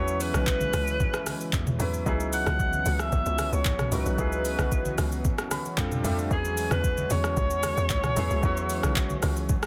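A deep, late-night amapiano groove at 113 BPM in straight 4/4 opens at once with an alto saxophone carrying the melody, a baby grand piano accompanying, a sawtooth analog pad holding sustained chords and a hollow log drum bass bouncing underneath. The saxophone sits up front with vibrato and a tape echo, yet its tone is distant and roomy, a pop-style solo voice over the mix. The piano sounds present and polished, and it steps out with a fill at 5.2 s, while the detuned pad stays mellow in the background with chorus and sidechain pumping. The electronic R&B kit arrives at 0.1 s with a soft kick, metallic hats, handclaps, rim clicks, shaker and toms, and low-tuned acoustic congas with a thick skin enter faintly from a large room at 0.3 s. The FM log drum has a fast attack and a decaying, percussive bite with a noise layer. Tuned to A4 = 445 Hz, the harmony moves from E69 to C#m11, then F69 and back to E69, all within a dense, heavily limited master with little reverb, cut from a longer piece.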